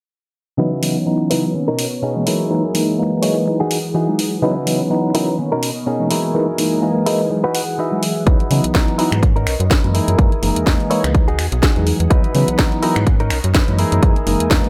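Filtered disco house with a nostalgic, funky feel, where a clean tine electric piano, a lush phased string machine in the background and a picked, compressed direct guitar riff all pump under a long filter sweep, joined by a layered house kit with a cracking snare, snaps and hats, a barely audible egg shaker, and, after a guitar fill at 7.3 seconds, a snappy, metallic FM slap bass and a punchy, up-front kick from 8.3 seconds.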